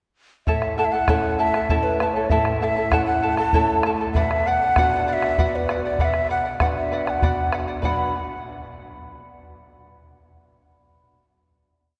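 Melancholic and earthy, this short Andean folk piece in a straight triple metre is led by a breathy, hollow cane quena that sits up front, its tongued hook phrases colored by vibrato. A shimmering charango with double strings mixes fingerpicking and strumming on open chord shapes, while a small nylon-string guitar fingerpicks bass notes and chord figures that carry the pulse, and a round, close bombo keeps an evenly spread pattern. All four play together from 0.5 s before settling onto a final chord at 7.8 s, with the room's long cathedral reverb ringing on.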